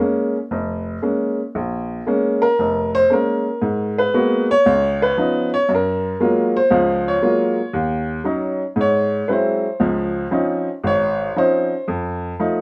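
Swinging and smoky, this short solo jazz excerpt in Bb minor moves at 116 BPM in 4/4 with swung eighth notes. A clear, woody upright piano sits up front in light reverb, spanning F1 to Bb6 and stretching into its solo at 1.5 seconds. The harmony travels from Bbm7 through Abm9, Db9 and Gbmaj9 to Ebm7, an Abaug7 and Dbmaj9, landing on F7 at 11.9 seconds.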